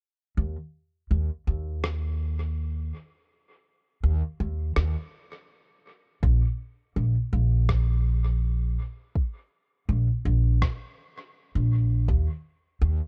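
Hazy, spacious ambient dub at 82 BPM in a gently swung 4/4, this fragment opens with a woody, thumpy pizzicato upright bass up front at 0.4 seconds, joined at 1.8 seconds by a muffled, pitched-down, sampler-style rim click soaked in dub echo, and at 6.2 seconds by a soft electronic kick sitting in the background, all within a small room and a dark, warm production.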